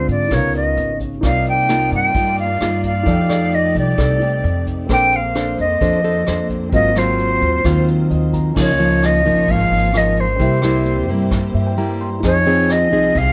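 Bossa nova at 131 BPM in a straight 4/4, this sophisticated, sunny passage is cut from a longer piece and settles into Db major at 8.6 seconds. An airy silver concert flute carries the melody with a straight tone and crisp attack. Beneath it, an up-front, fingerpicked nylon-string guitar with fresh strings supplies classical-style accompaniment, while a woody, thumpy pizzicato upright bass on gut strings anchors the low end. A vintage brush drum kit sits distant in a small, roomy space, with dark cymbals, a punchy kick, hi-hat and rim click. In the background, an intimate grand piano with audible action noise and long sustain adds fills, one near 11.3 seconds. A bowed studio string section, entering at 1.2 seconds, lays smooth sul tasto chords with vibrato under lush harmony moving from Db13 through Cm11, F13, Bbmaj9 and Ab13 to Db69, C7 and Fm7, all framed by light reverb.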